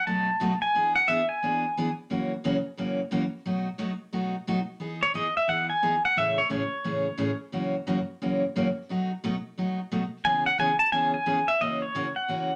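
A clean, warm pedal steel guitar opens this cheerful, playful country excerpt with fingerpicked slide phrases and volume swells in short bursts starting at 0.0, 5.0 and 10.2 seconds, while a bright, full-bodied dreadnought acoustic guitar, picked with audible finger squeak, carries a swinging accompaniment through seventh-chord changes, both up front in a wet studio reverb.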